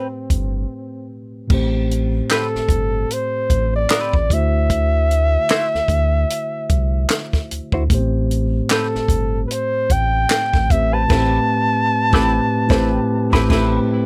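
R&B with a neo-soul lean, this short cut from a longer piece moves at a relaxed, swung pace with a smooth, sultry mood. A mellow flugelhorn carries the melody up front, close-miked with a gentle vibrato, while a semi-hollow electric guitar plays a clean, compressed second line colored by wah and phaser. A tine electric piano supplies soft, direct chords beneath them, moving through Am9, Am7 and D9 harmonies. A round analog bass with a deep, dark tone and a compact cocktail drum kit enter at 0.3 seconds, the kit giving a punchy kick, a high-tuned snare, handclaps, hi-hat and dark crash cymbals from a tight booth. A saxophone section slips in at 11.1 seconds with tight stabs sitting in the background, touched by tape echo, as the band hits an accent. Light reverb gives the whole a close, intimate sheen.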